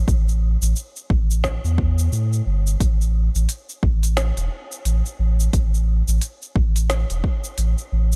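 A swung 16th-note groove at 88 BPM in 4/4 drives this meditative, earthy organic downtempo excerpt, where an overdriven, layered electronic kick sits up front beside a round, sustained sine sub bass with a fast attack, while a quieter organic electronic kit of woody snare, crisp hi-hats and shaker adds tape-tinged, small-room texture, the whole mix carrying little reverb.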